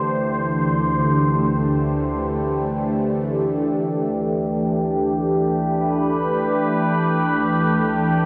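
Melancholic and reflective, this free-time ambient passage, cut from a longer piece, is carried by an up-front wavetable pad whose dark, detuned, warbling tone morphs through sustained chords with a phaser and long release, shifting from Cadd9/D to Gadd9/D at 3.5 seconds. A bright, tense, string-like drone with vibrato hovers alongside it until 3.6 seconds. A clear, earthy bowed double bass section then enters in the background, holding a low D with light vibrato beneath the pad, all bathed in a wet spring reverb.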